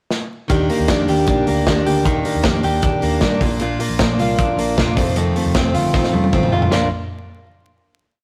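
Jangly indie pop at 154 BPM in Bb major, youthful and breezy, opens with a drum fill in the 0.5-second pickup before the full band drops into a short verse moving from Ebmaj7 through Bb and F7, landing on a final Bb chord at 6.7 seconds. Up front, a modern drum kit with a punchy kick and a rolled-off top drives a dance-floor indie beat with off-beat open hats, beside a compressed, direct-recorded clean electric guitar playing a fingerpicked roll pattern, while a bright, full-bodied jumbo steel-string acoustic strums eighths in open chord shapes with audible finger squeak. A dark, foam-muted vintage bass sits in the background with a round, melodic line, and the whole piece carries a rough rehearsal-room sound with stone-room reverb, saturation and vinyl crackle.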